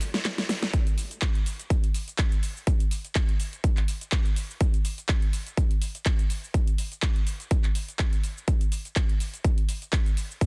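House groove at 124 BPM in 4/4, with a light swing on the sixteenths and an aggressive, swaggering attitude, cut from a longer piece. It opens with a drum fill on the big-room dance kit, whose cabasa, handclaps, metallic hats and huge snare sound layered and heavily produced, re-recorded in a small room. The electronic kick drum enters at 0.7 seconds, punchy and up front, and carries the pulse alongside the kit through to 10.5 seconds. The kit sits lower in level than the kick, which dominates the balance. The sound is dry, with little reverb, and the master is dense and heavily limited.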